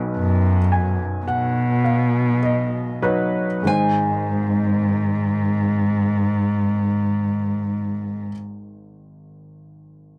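A dry, close recording in a 1970s studio style, with little reverb, frames this short folk passage cut from a longer piece. The mood is heartfelt and tender, moving in a straight 4/4 at a slow 47-57 BPM, tuned to A4 = 436 Hz. It slows through its opening section until 3.7 seconds, where the harmony shifts from B to Ab. A single bowed cello sits up front carrying the bass, its nasal, boxy tone shaped by vibrato and portamento in an expressive line. Above it, a fingerpicked nylon-string guitar carries the melody with a full-bodied, deep classical sound. An intimate upright piano, woody and slightly detuned with audible action noise, provides the accompaniment and sounds until 10.2 seconds, after the guitar and cello stop at 8.3 seconds.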